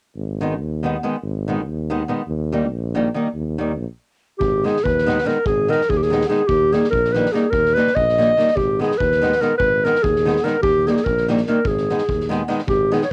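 An up-front, mellow clarinet takes the melody from 4.4 s in this fiery, restless Balkan wedding-band folk excerpt in 5/8, joined by distant, roomy soft-mallet drums with a punchy kick, over a bright, fingerpicked nylon-string guitar and a smooth-topped tuba with light vibrato, the music speeding up throughout, with a brief stop just before the clarinet enters, all captured with light reverb as a home recording on cassette.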